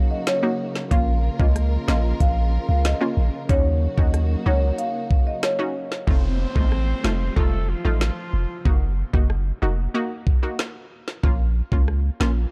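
An electronic island pop drum kit with a knocking kick and woody snare sits up front beside a deep, punchy sine sub bass in this bouncy, hypnotic dancehall excerpt at 93 BPM in Bb harmonic minor, where a detuned sawtooth pluck with chorus and sidechain pumping plays accompaniment, a dark marimba carries the melody through a digital delay over bowed, vibrato-laden strings with sidechain pumping until 6.0 s, and at 6.1 s a loose, jazz-style horn section takes a second line with delay while a downlifter sits in the background of a small room.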